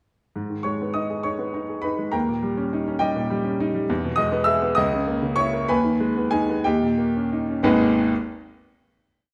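A solo concert grand piano opens at 0.4 seconds with an agitated, stormy classical study in six-eight metre, played with free rubato. The tune rings out in filled octaves over sweeping arpeggios, spanning the keyboard from a deep bass up into the upper register. The harmony moves from G# minor through D#7, E and a diminished chord before returning by way of D#7 to a closing G# minor chord at 7.7 seconds. From 3.0 seconds the tempo broadens, slowing toward that last chord, and the piano's final sound ends at 8.1 seconds. The instrument sounds clear, natural and up front, set in a wet stone room whose reverb lends the brief, complete piece a lingering resonance.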